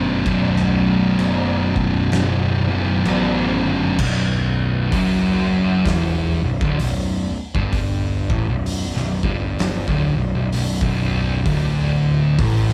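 A slow, swung 4/4 pulse at 64 BPM drives this brooding, ominous stretch of stoner and doom metal in B minor, cut from a longer piece. A thick fuzz guitar plays the riff up front throughout, sitting between B1 and B2 with distortion, while a second fuzz guitar also plays the riff from the background during the opening 4.0 seconds and returns at 11.5 s. Underneath, a picked electric bass with a bright, growly overdriven tone holds the low end from B0 to A1. The oversized, low-tuned drum kit enters at 0.3 s with a boomy kick, fat snare, dark cymbals and a gritty, saturated sound in a big, pumping room. The harmony rests on B5 before shifting to D5 near the close, all set in a moderate studio reverb.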